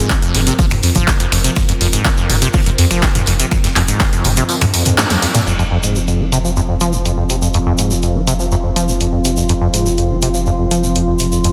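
A straight 4/4 acid house groove runs at 123 BPM, driven by a punchy, overdriven analog drum machine with crash, finger snaps, handclaps, hi-hat, snare and toms, plus a grainy tube shaker and a very quiet, dry reggae drum kit with a high-tuned snare, hi-hat and tambourine. An up-front electronic kick with overdrive anchors the opening before falling away, and a drum fill carries the cut from a longer piece into its second section at 5.5 seconds. There, filter sweeps take hold of the drums, the squelchy, resonant sawtooth acid bass riff and the string machine, deepening the trippy, hypnotic mood. Beneath the bright, chorused acid line, a deep, sine-based saturated sub bass sustains, while a lush, vintage full-ensemble string machine holds mellow chords in the background, pumping against the beat. At 7.0 seconds a warbling, lo-fi tape-like pad with ring modulation and a nostalgic, dark tone drifts in. 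Lush hall reverb and a dense, heavily limited master give the track a full, modern sheen.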